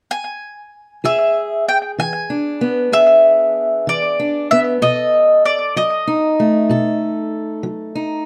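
A round, double-strung mandolin with slapback echo carries the melody up front in this soulful, gritty acoustic country blues fragment in a slow 12/8 at 64 BPM, playing alone from 0.1 s until a boxy, fresh-stringed parlour steel-string guitar joins at 1.0 s with fingerpicked accompaniment over E7, moving to B7 at 4.8 s, all captured with close, detailed microphones and light reverb.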